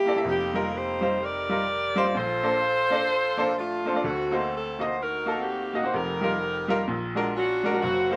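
A moderate studio ambience gives this short gospel excerpt a close, natural sound, with both instruments placed up front. A mellow saxophone section carries the melody in a smooth, jazz-inflected ensemble voice, its soft attack and light vibrato lending the line a reverent, uplifting glow. Beneath it, an upright piano supplies the accompaniment with a woody, worn tone that is slightly detuned yet still clear. The music moves in a swung 4/4 feel through rich harmonies, opening on F9sus4 and passing through Bbmaj9 and D7b9b13 before returning to F9sus4 and landing on Bb7alt. Both parts play together throughout the full 8.2 seconds, drawn from a longer piece.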